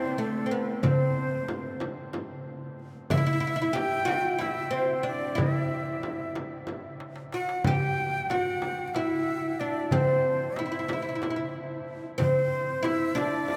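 A woody, fretless oud carries a longing melody up front while a breathy, reedy flute with vibrato traces a close-miked second line above it, opening this soulful Turkish makam ensemble fragment in 7/8 at 185 BPM (eighths), tuned to A4 = 438 Hz, before a crisp metal-shell darbuka joins at 0.5 s, a warm frame drum follows in the background at 0.8 s, and a drum fill arrives at 7.0 s, with the ensemble set in a vast, echoing cathedral space.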